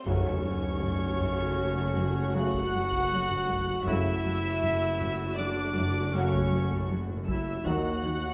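A wet scoring-stage reverb surrounds this eerie, mysterious suspense cue in 5/4, a fragment of a longer cinematic score that begins with a band accent and an impact at 0.1 s. High chamber violins carry the melody with light vibrato and a soft sul tasto touch, while a close, warm solo clarinet and floating symphonic violins play a second line. Beneath them, dark violas provide accompaniment as mellow French horns and trombones hold sustained chords, a dark cello riff sits under cellos and double basses on the bass, and background taiko drums struck with heavy sticks play alongside a very quiet tam-tam that stops at 3.1 s and an electronic sub drop that ends at 3.9 s.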